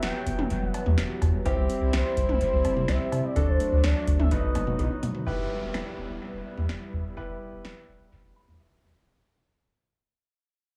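A deep, round analog bass anchors this melancholic, nocturnal synth-pop fragment as an up-front electro drum machine with punchy snare, metallic hats and cowbell drives it, a warbling vintage pad holds sustained chords, and an intimate grand piano with audible action noise accompanies and closes with a fill. A soft pluck plays arpeggios in the background until 5.2 seconds, a smooth sawtooth lead with vibrato carries the melody through 5.0 seconds, and a downlifter enters at 5.3 seconds as the echo-heavy mix fades out.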